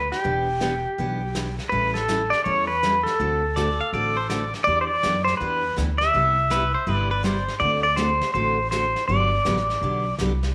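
Western swing country at 163 BPM in G major, this cheerful, down-home excerpt from a longer piece rolls along with a swung eighth-note feel in 4/4. A bright, twangy pedal steel guitar carries the melody up front, played with fingerpicks and slide, with volume swells and a slapback echo. A second, mellower pedal steel joins from 3.6 to 7.5 seconds to add a higher line. Underneath, a woody pizzicato upright bass and a full-bodied dreadnought acoustic guitar, picked with audible finger squeak, hold down the harmony through Em7, A7, D7, Cmaj7 and a closing Gmaj7. A vintage brush kit sits low in the mix, its brushed snare and hi-hat rolled-off on top and pumping in a studio room. A moderate spring reverb gives the whole band a touch of classic honky-tonk space.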